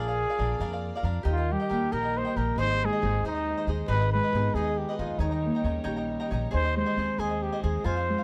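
Mariachi-flavored Mexican folk in a proud, romantic 6/8 at 91 BPM, this short excerpt from a longer piece puts a dark, classical-style solo trumpet with light vibrato up front on the melody over crisp picked cavaquinho, a woody, thumpy pizzicato upright bass, and an earthy bowed chamber violin section holding sustained chords in the background, while a ringing thumb-plucked Celtic harp with tape echo joins on arpeggios at 1.3 seconds, all captured with close, detailed microphones and light reverb as the chords move from Bb through Eb, Ab and Abm to Eb7 and Ab/Eb.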